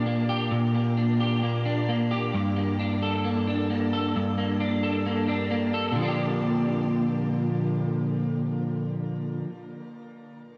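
An up-front, slightly broken-up electric guitar plays alone through this brief dream pop excerpt, its picked, compressed tone treated with ensemble chorus and digital delay and bathed in a long shimmer reverb, moving from Bb6 to Gmadd9 and back to Bb6 at 6.0 seconds for a floating, dreamy mood in a dark, warm production.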